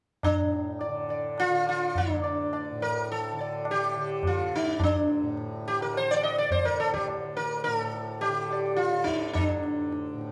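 Hindustani classical music in raga bhairavi at 105 BPM, solemn and meditative, with a round, up-front, plectrum-plucked sitar carrying the melody over its buzzing sympathetic strings, a close, high-tuned tabla ringing beneath it, and a bright, softly plucked tanpura drone shimmering quietly underneath, all three playing together live in a large, reverberant studio throughout this brief passage cut from a longer piece.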